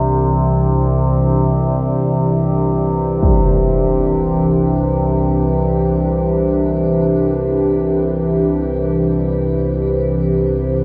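In free time, this ominous, desolate dark ambient drone, cut from a longer piece, sets a moody, detuned analog pad holding a sustained Em7 chord with chorus, phaser and shimmer reverb over a resonant, overtone-sweeping low drone with moving overtones, both up front, while a huge, dark, low-pass-filtered impact lands at 3.2 s, all bathed in a wet spring reverb.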